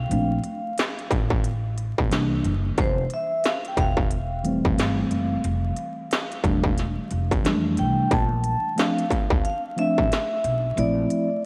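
Airy, ringing vibraphone with slow motor vibrato and a woody, growly pizzicato upright bass open this relaxed, smooth jazz-hop excerpt, joined at 0.1 s by a mellow tine electric piano and an up-front industrial drum kit with a distorted kick, clanging snare and crisp hats, the swung mix drifting through dreamy church reverb and vinyl crackle before a brief new section arrives at 8.1 s.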